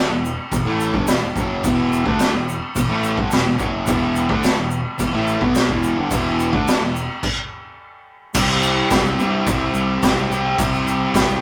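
A rough rehearsal-room recording with tube saturation and light reverb frames this gritty, menacing garage rock excerpt in straight 4/4, led by a bright, double-tracked fuzz guitar riff that sits up front over a growling, overdriven fingered bass in the background. A grainy egg shaker slips in at 0.3 seconds, a raw, punchy drum kit with a high-tuned snare and a rolled-off top follows at 0.5 seconds, and the band halts for a stop from 7.2 to 8.4 seconds. The riff then shifts from E5 to C5 power chords as a new section begins.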